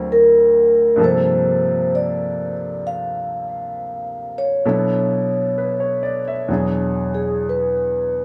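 Jazz ballad, tender and late-night, in 4/4 at a swung 66 BPM, this 8.2-second excerpt sets a mellow, ringing vibraphone, played with soft mallets and its motor off, up front on the melody through tape echo in a boxy small room, over a smooth, vintage concert grand piano with deep bass, as the chords move from D7alt through Gm11 and Bm11 to E9 within a wet spring reverb.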